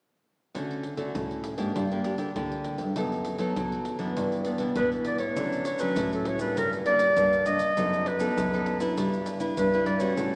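Heard through a small-speaker sound, this festive, lively samba and choro fragment sits in the long, wet reverb of a church or concert hall, trimmed from a longer piece. A dark, fingerpicked nylon-string guitar in classical style carries the accompaniment from 0.5 s, while a second nylon-string guitar, warm and up front, plays the bass line beneath it. Surdo, pandeiro and tube shaker keep the pulse, with a tight surdo and soft hands giving the percussion a close, dry character low in the blend. A mellow clarinet enters at 4.8 s as the solo melody, played in classical style, both up front and distant within the roomy space. The second section begins at 5.4 s and repeats the opening harmony, cycling through Dmaj7, Gm, B7/F# and Em7/G in a straight 4/4.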